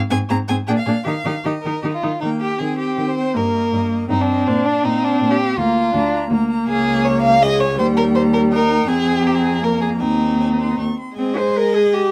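Close, detailed microphones and light reverb give this lively, spirited string quartet passage, cut from a longer classical-period movement, an intimate clarity as it moves at a quick 161 BPM in 3/4 with a rubato feel, starting in Eb major and shifting to Ab major at 6.7 s. The first violin carries the melody with a warm, even vibrato and smooth top, set softer than the others, while the second violin sings an expressive, up-front second line with portamento. The viola's focused, smooth accompaniment and the cello's rich, bowed bass complete the texture.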